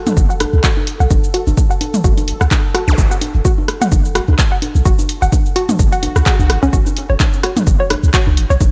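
A dry, echo-heavy mix opens this clinical, quirky minimal techno excerpt in F# minor at 128 BPM with a swung 4/4 feel, where a hollow, bouncy square pluck riff with chorus, dub echo and sidechain pumping sits over a bubbling resonant stepped-filter texture in the background, a deep pitch-dropping sub bass and an up-front punchy kick, while analog drum machine cabasa, handclaps and hi-hat mix with overdriven congas, rim clicks and toms through tape echo, a filter sweep on the synth arpeggio runs from the start and electronic zap and swell effects enter at 2.9 seconds, until the texture stops and the drop lands at 6.7 seconds.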